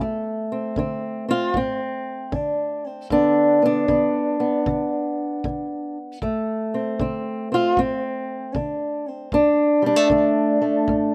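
Acoustic country blues with a rollicking, soulful mood, moving at 77 BPM in 4/4 with a swung eighth-note feel, cut from a longer piece. A fingerpicked acoustic archtop guitar carries the melody up front, its dark, woody, boxy tone shaped by old strings, over chords shifting from D5 to G at 3.1 seconds and back to D5 at 6.2 seconds. A punchy, natural kick drum with a small-room character sits low beneath it from 0.8 seconds, and the outdoor recording carries little reverb.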